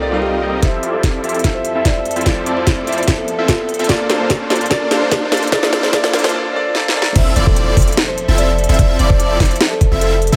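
A half-time future bass groove at 147 BPM in F major, this lush, playful piece opens with a brief swell before knocking electronic kicks and a tape-warm trap kit with a sharp snare and crisp, filtered hats come in at 0.6 seconds. They drive a build-up over Fmaj7, Bbmaj7 and Cm9, where a buzzing, woody kalimba carries the melody through sidechain pumping and delay, a clear vintage grand piano sits in the background with tape echo, and huge detuned supersaw chords move through a filter sweep over very quiet bowed strings. After a short break, the drop lands at 7.2 seconds with an impact, as a deep, boomy 808 bass returns and an airy, dreamy lead with chorus and vibrato joins for pumping arpeggios.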